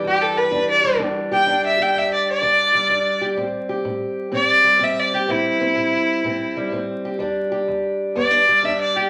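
Acoustic country blues in E minor, this mournful, brooding excerpt moves at 126 BPM in 4/4 with a swung eighth-note feel. A rich, focused fiddle carries the melody from 0.1 seconds, bowed by one player with light vibrato, sounding distant yet sitting up front and well above the guitar in level. Beneath it, a fingerpicked steel-string parlour guitar supplies the accompaniment from the start, its tone dark and boxy. The harmony moves from Em7 to Am7 at 3.4 seconds and back to Em7 at 7.2 seconds. A moderate large-studio reverb and a layer of vinyl crackle give the short passage an aged, roomy atmosphere.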